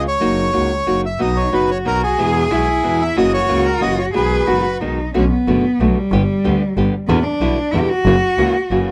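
Tango in 3/4 at 184 BPM with an elegant, playful rubato feel, cut from a longer piece, where a reedy, full bandoneon carries the melody until 4.8 s over fingerpicked nylon-string guitar and a bright, biting bowed double bass, while a dark cello with expressive vibrato, portamento and slapback echo enters at 1.2 s and takes the solo from 5.1 s as the key turns from B major to B minor, all captured by close, detailed microphones in a light reverb.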